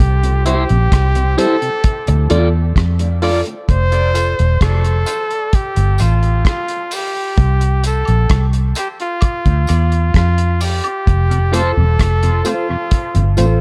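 Spacious and hazy, this dub reggae excerpt moves at 65 BPM in F major, with a clear, close-miked flugelhorn carrying the melody through dub echo over a dark, foam-muted fingered electric bass and a cloth-damped, thuddy drum kit with a tight kick, all sitting dry with little reverb. In the background, a barky, reedy electric piano adds overdriven stabs, a mellow tonewheel organ with slow rotary and chorus vibrato drops out at 4.0 seconds and returns at 11.3 seconds, and an electric guitar at the edge of break-up adds brief tremolo touches. Tambourine and woodblock join at 4.2 seconds after an opening break, and a filter sweep runs through most of the passage.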